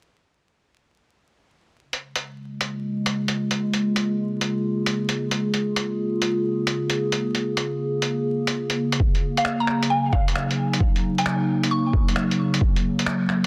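A swung sixteenth-note groove in 4/4 sets this melancholic, ghostly future garage excerpt in motion, carried by a lo-fi sampler-style kit of finger snaps and hi-hat that sounds pitched down, muffled and tape-softened, with soft clipping roughing up the snare. A warbling, nostalgic pad enters just after, holding dark, detuned sustained chords that move from Bbm7 to Ab9sus4, its chorus and built-in reverb shimmering while sidechain pumping makes it breathe against the beat. At 9.0 seconds a thumpy, compressed electronic kick drum arrives up front, and moments later a mallet-like synth pluck offers a brief, woody, round melody high in its register, bathed in lush chorus and tape echo. A moderate hall reverb lends the mix a haunted sense of space, while vinyl crackle and a dense, heavily limited master give it a worn, intimate character.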